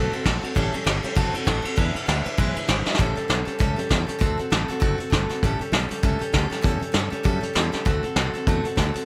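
A vintage brush drum kit anchors this upbeat, rowdy rockabilly excerpt, with its punchy kick, medium-tuned snare and rolled-off top sitting up front and a drum fill at 2.8 seconds, as the music swings at 197 BPM in A mixolydian over D7, A7 and E7 chords, alongside a full-bodied, warm picked dreadnought steel-string acoustic guitar and a bright, growly fretless electric bass, all in a dry, close studio sound.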